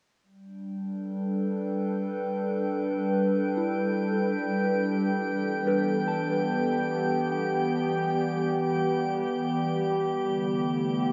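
A slow, straight 3/4 at 72 BPM carries this luminous, serene ambient excerpt in G major, where a warbling, nostalgic tape-like pad sits up front from 0.5 seconds, holding detuned, mellow chords through G6, Em7 and Dsus4. A glassy texture of drifting overtones hovers high above, a calm organ-like drone settles beneath from 3.3 seconds, and a soft, pure FM synth bell plays arpeggios in the background from 3.6 seconds, touched by phaser, delay and shimmer. The recording is bathed in a huge, wet reverb and carries a worn cassette character with drifting pitch.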